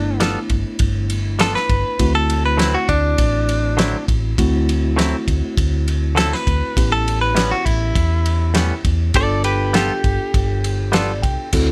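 This short excerpt of straight-eighth soul blues in D mixolydian, at 101 BPM in 4/4, opens with a clean, twangy electric guitar soloing up front. Beneath it sit a mellow tine electric piano and a round, foam-muted fingered bass with a punchy, amped tone. Moments later a second direct-recorded guitar, bright and scooped, adds picked stabs in a lower register. A dry soul drum kit enters at the same time, with a fat snare, tight kick, dark ride and crash cymbals, and a pumping room sound. The harmony moves through G9, D9 and A9 before returning to G9 under a soulful, gritty mood, and light reverb sits over the whole mix, with both guitars compressed. Near the close, at 10.6 seconds, the electric piano slips in a brief fill.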